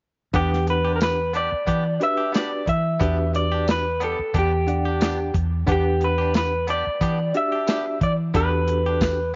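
Smoky and brooding, this short soul blues excerpt settles on a single Em7 chord with a straight-eighth feel and a light sixteenth-note swing. An electric guitar through a small old amp carries the melody from 0.4 seconds, its dark, slightly broken-up, lo-fi tone sitting up front. Alongside it, a barky, reedy electric piano plays accompaniment with light overdrive and a medium tremolo heard through its built-in speakers. A clean, twangy guitar, recorded direct and picked, adds bright stabs bathed in spring reverb. A foam-muted fingered bass gives a round, punchy low end up front, while an acoustic soul drum kit of hi-hat, kick, snare and tambourine stays dry and smooth, with a tight kick and a rolled-off top. The whole performance sits in a studio ambience, and the bass rings out last, to 9.4 seconds.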